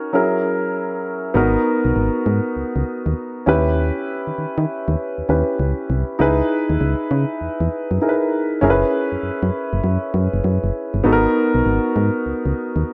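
A worn, long-sustaining baby grand piano opens this bouncy, confident new jack swing R&B cut alone, voicing an F#7 chord before a punchy, round FM bass with a dark, digital bite joins at 1.4 seconds. The two parts sit up front in a small room with light reverb, moving with a swung sixteenth-note feel through lush extended chords like G#m9, D#7b9b13 and F#9sus4 before settling back on G#m9.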